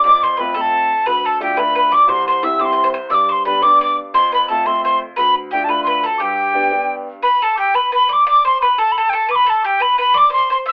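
A tongued, airy tin whistle with vibrato and chiff leads this rollicking, bright Celtic jig in 6/8 at 117 BPM in G mixolydian, up front over a picked, double-strung bowl-back mandolin second line and a woody, boxy upright piano that accompanies until 7.2 seconds, all heard as a band live in one room with a telephone-like sound in a short cut from a longer piece.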